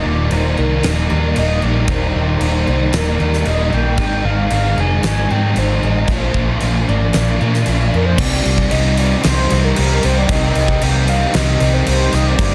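A straight 4/4 groove from a huge arena drum kit with a fat snare and punchy kick drives this dreamy, hazy rock piece in a shoegaze and dream pop vein. An up-front, round, foam-muted fingered bass sits under two overdriven guitar riffs: one crunchy with lush chorus, the other a hollow-body semi-hollow set in the background with reverse reverb. A very quiet, shimmering twelve-string acoustic picks arpeggios, a deep, moody ambient pad holds sustained chords, and a mellow horn-like synth lead with soft attack, vibrato, chorus and digital delay carries the melody as the chords move from Ebmaj7 to Cm7, in a small room sound with a dense, heavily limited master.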